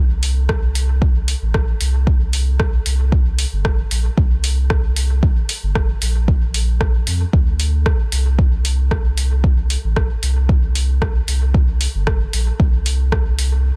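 A straight 4/4 pulse at 114 BPM drives this short dub techno cut, taken from a longer piece and set in a cavernous, nocturnal mood. An electronic kick drum, deep, layered and overdriven, sits up front from 0.5 seconds, with a small-room character baked into its sound. Around it, a deep house drum kit supplies hi-hat and rim click from 0.2 seconds, also overdriven and carrying that same boxy, re-recorded grit. Underneath, a round, sine-like sub bass moves between G1 and F2 from the very start, its fast attack and sustained, mellow tone thickened by tube saturation and pumped by sidechain compression. The mix stays dry with little reverb, and the master is dense and heavily limited in a modern way.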